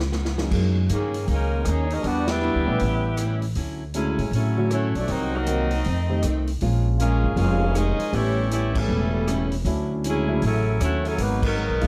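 Big band swing at 158 BPM with a sultry, dramatic mood, this excerpt opens on a short drum fill before a bright, vintage saxophone section takes the melody at 0.9 s, alongside a clear, smooth-topped trombone section on the second line. A woody, thumpy upright bass sits up front over a swinging kit with a punchy kick and medium-tuned snare, while a concert grand piano with audible action noise and a picked steel-string acoustic guitar stay in the background. The close, detailed sound carries little reverb, and band accents punctuate the passage at 2.2 and 8.7 s.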